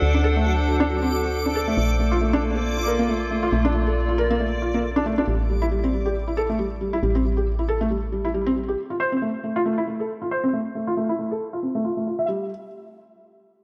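A felt-muted upright piano plays intimate, thickly damped arpeggios through a low-pass filter and delay, with a filter sweep from 5.3 to 12.3 seconds, above a round, woody FM bass, while a warbling, detuned tape-like pad with chorus lends nostalgic lo-fi colour and a faint reversed, granular swelling texture glints in the background until both stop at 5.3 seconds in this cerebral, melancholic IDM excerpt at 137 BPM in A phrygian.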